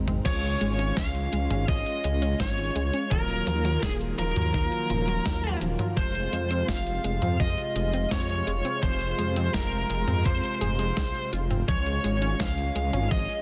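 Synthwave with a nostalgic, cinematic mood, opening on a drum fill before a high-gain, distorted lead guitar carries the melody up front with delay and vintage 12-bit sampler grit over a thumpy electronic kick, a dark, rumbling detuned saw bass with sidechain pumping, airy supersaw chords moving from Db through Ebmadd9 to Fm, and lush, warbling pluck arpeggios with delay sitting in the background, all under light reverb and a dense, heavily limited master.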